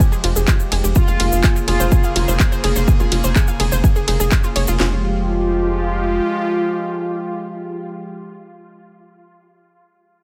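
A punchy kick, cracking snare and handclaps from a tape-warm, up-front house drum kit lead this hypnotic, cinematic stretch of melodic techno, which runs in a straight 4/4 at 125 BPM in F minor, tuned to A4 = 439 Hz. A second, softer kit layer adds handclaps, hi-hat and ride cymbal with sidechain pumping, while a grainy, close and dry cabasa sits beneath, and all of this percussion falls away just before 5 s. A tight, driving sequencer bass holds F1 with a sawtooth and square-wave edge, a moving notch and sidechain pumping, continuing until 6.2 s. An evolving, detuned pad with a slow attack and long release sustains chords from Fmadd9 to Bbm7/F and back, and a lush unison pluck plays bright arpeggios through digital delay. From 1.0 s a bold, fat analog synth brass carries the melody on F4, its ring-modulated, wave-folded tone treated with chorus and dub echo, in a dry mix with little reverb.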